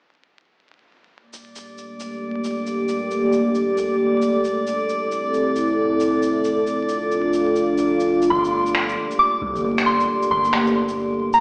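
A swung sixteenth-note groove in 4/4 opens this ghostly, melancholic future garage fragment, with an electronic shaker and finger snaps arriving at 1.3 seconds, carrying a gritty 12-bit sampler edge and a small-room character. A glassy, bright harmonics texture with drifting overtones and chorus soon floats in, and at 2.0 seconds a moody, full-bodied detuned analog pad with chorus settles up front, holding sustained chords that move from Gmadd9 through Am and Dm and back. At 8.3 seconds a gentle FM bell melody with chorus, phaser and analog delay joins a round, sine-like 808-style bass, all washed in a lush hall reverb and a stone room, with vinyl crackle and a thin AM radio tone over the whole mix.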